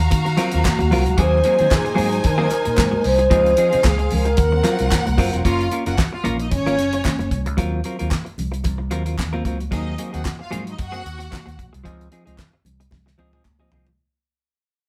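Caught with the band playing live together in one room under moderate studio reverb, this driving, danceable disco cut is anchored by a dry, damped 70s drum kit up front, with its fat snare, tight kick, hi-hat, toms and handclaps, alongside a punchy fingered electric bass and a dark, clean, compressed semi-hollow electric guitar. A lush bowed violin section adds a vibrato-rich second line until 11.6 s, and a pure, distant alto flute carries the tongued melody only from 0.7 to 5.2 s. Very quiet bright congas and a human group handclap sit underneath as the music fades out from 5.4 s, closing on a drum fill at 12.9 s.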